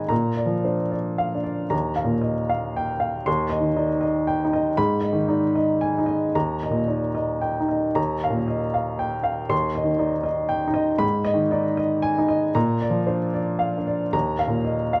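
An upright piano with a woody, natural tone sits up front, playing alone across the full 15 seconds from low Eb2 to high C6 in this peaceful, intimate neoclassical minimalist piece. In Eb major and 3/4, with a rubato feel drifting between 108 and 121 BPM and tuned to A4 = 438 Hz, it states a phrase at 0.0 seconds and repeats it from 8.0 seconds, moving through Ebadd9, Cm/Eb and a darkening Abm before settling on Ebsus2. Close, detailed microphones and light reverb keep this short cut from a longer piece feeling near and unhurried.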